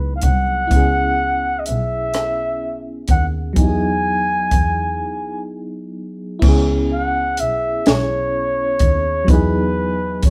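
A breathy, whispered flugelhorn sings an intimate melody with scooped notes over a mellow, tremolo-laced FM electric piano and a woody, bowed double bass from the very start, joined at 0.2 s by a compact, dry cocktail drum kit with a punchy kick and high-tuned snare, in a sultry, late-night slow six-eight R&B excerpt that features a brief break at 5.0 s and carries the moderate reverb of a band playing live in one room.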